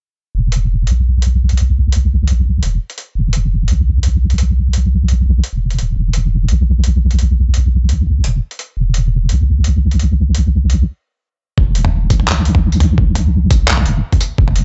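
Half-time drum and bass at 171 BPM in 4/4, with a lightly swung sixteenth feel, this cut from a longer piece carries a tense, cinematic mood. A deep, soft wobble bass enters at 0.3 seconds and sits up front, its dark, rounded tone sustained and compressed, with chorus adding a gentle shimmer low in the register. From 0.5 seconds a boom bap sampler-style drum kit joins with handclaps, hi-hat, tambourine and toms, pitched down and overdriven into a gritty, compressed texture within a small room ambience, sitting lower in the mix than the bass. A stop arrives at 10.9 seconds, then the drop at 11.6 seconds brings in an electronic kick drum, a thumpy, overdriven, pitched-down hit placed up front with the same small room sound. The ambience is digital, with the top end rolled off above 7.9 kHz.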